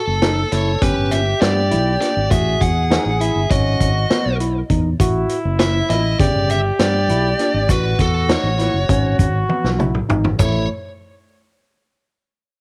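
A biting, overdriven lead guitar carries the melody from the first moment while a distant, roomy flugelhorn with vibrato sings a second line beneath it, both coloured by cassette tape and plate reverb, with analog delay on the guitar. A punchy, up-front fingered bass, a barky electric piano playing gritty arpeggios through a combo amp, and a saturated vintage drum kit with a rolled-off top drive this bright progressive excerpt in 9/8 over chords moving between A5, G and G#m7, while a grainy tube shaker sits quietly in the background from 1.1 s. The drums play a fill from 9.5 s, and the whole has the snug booth ambience of a home cassette recording.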